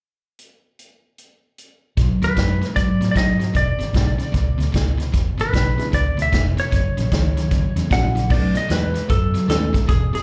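Heard through a club PA with light reverb, this rollicking, gritty electric blues shuffle swings at 152 BPM: a big-band drum kit with a punchy kick and medium-tuned snare starts alone, then at 2.0 seconds a biting overdriven guitar riff with spring reverb and slapback echo and a round, foam-muted fingered electric bass join, a twangy, compressed lap steel slide melody follows at 2.2 seconds, and a woody, boxy upright piano with audible action noise sits in the background from 5.8 seconds, in a cut from a longer piece.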